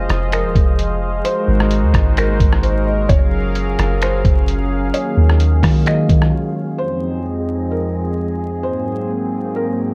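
A muffled, pitched-down sampler-style drum kit sits up front, its thumpy kick, hi-hat, rim click and finger snaps compressed into a half-time hip hop groove at 130 BPM. This short atmospheric cloud-rap cut from a longer piece feels blissful and floating. A deep, round 808-style bass with a fast attack and dark decay shares the foreground, and both it and the drums drop out at 6.3 seconds, leaving a brief break before a new section begins at 6.8 seconds. Alongside them, a vintage analog pad, also up front, holds smooth, warbling, detuned sustained chords through Fm7, Ab9, Gbmaj7 and Ebm11, coloured by chorus and sidechain pumping. A felt-muted upright piano carries the melody from 0.3 seconds, its mellow, intimate tone softened further by a low-pass filter and a slapback echo. A very quiet, airy, wind-like noise texture lingers in the background, and the whole recording is dry, with a layer of vinyl crackle over the top.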